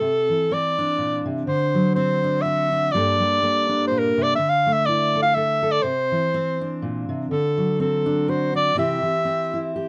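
Gentle and pastoral, this short folk excerpt cut from a longer piece moves in an easy 3/4 at 123 BPM with a light swing on the eighth notes. A clear alto saxophone carries the melody from A4 to F5, played in a classical style with light vibrato and sitting up front as a solo voice. Beneath it, a fingerpicked steel-string dreadnought guitar gives warm, full-bodied accompaniment from G2 to A4, also close in the mix. The harmony drifts through Cadd9, D7, Gmadd9 and Dsus2 before settling on C near 8.8 seconds, with the saxophone stopping at 9.7 seconds and the guitar ringing on to 9.9 seconds. Close, detailed microphones and light reverb keep the sound intimate and airy.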